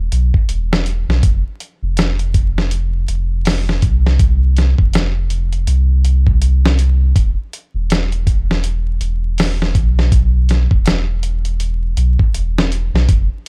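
A deep, round sub bass with tube saturation opens this hypnotic, cinematic trip hop excerpt at 81 BPM, holding sustained low notes up front. Almost at once a dusty, sampler-style soul drum kit joins with a thumpy kick, medium-tuned snare and hi-hat, compressed and gritty, swinging lazily on the 16ths. The dry hardware sound carries a bed of vinyl crackle and a digital ambience, and the fragment runs to 13.5 seconds.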